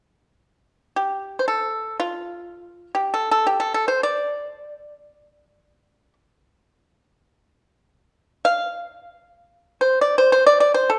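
This is a Chinese traditional piece for solo plucked strings in free time, a contemplative, longing excerpt cut from a longer work and tuned to A4 = 441 Hz. The pipa plays solo from 1.0 to 11.0 seconds, staying between F4 and F5. Its tone is acoustic and percussive with a dry, fingerpicked attack, and it sits up front inside a recital hall whose 1.3-second reverb lends a lingering resonance.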